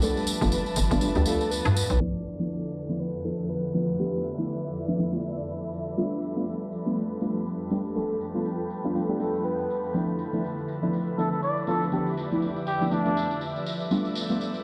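This moody, late-night deep house excerpt opens with a soft, dark chord stab up front, treated with chorus, phaser and tape echo, over an airy, breathy pad, a blurred, evolving granular cloud pad and a jingly acoustic tambourine, all in a swung 4/4 groove. A hollow, bouncy FM bass knocks in punchily at 0.4 seconds but drops out after a short phrase, while a flute-like synth lead with vibrato and a cassette-tape tint enters at 1.3 seconds and returns briefly later. Once the second section begins, a filter sweep with a moving notch runs through the stab as the harmony shifts between G9 and Dm69, and a very quiet downlifter and riser drift in the background. At 11.2 seconds a veiled, close-miked trumpet with a cup mute takes a short solo in classical style, touched with tape echo. The whole mix sounds as if it is played through a big sound system in a bare stone room, with a plate reverb and a low-pass filter softening its edges.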